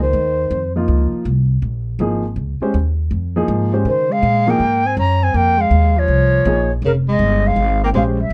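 A dark, warm production with light reverb frames this short fragment of cool, hypnotic modal jazz in Bb dorian, swinging at 162 BPM in 4/4 over a single Bbm11 chord. Up front, a concert flute carries the melody with an airy, tongued tone, gentle vibrato and rolled-off highs, while a breathy tenor saxophone plays a second line more than an octave below with a dark, smooth-topped subtone and light vibrato. The two horns sound briefly together until 0.7 seconds, then fall away and return at 3.9 seconds to play through the end. Underneath, a pizzicato upright bass on gut strings gives a woody, thumpy pulse for the whole passage, sitting prominently in the mix. A baby grand piano joins at 0.8 seconds with intimate, natural accompaniment, its action noise audible close to the ear.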